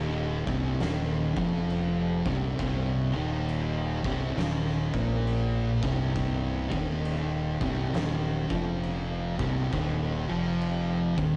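Stoner and doom metal, ominous and brooding, crawls along at 67 BPM in 4/4 with a 63% swing on the eighth notes, sitting in C minor with the tuning dropped slightly to A4 = 435 Hz. Two thick fuzz guitars carry the picked riff from the very start, one up front and one further back, both dark and distorted. Beneath them a fuzz fingered electric bass growls in the low register, overdriven and placed prominently in the mix. An oversized low-tuned drum kit enters at 0.5 s, sitting in the background with a fat snare, punchy kick and crash cymbal, its gritty, saturated tone carrying the sound of a bright stone room. The harmony rests on Cm before shifting to Ebsus2 at 9.7 s, and the whole short cut, taken from a longer piece, has the rough, tube-saturated feel of a rehearsal room with a moderate booth ambience.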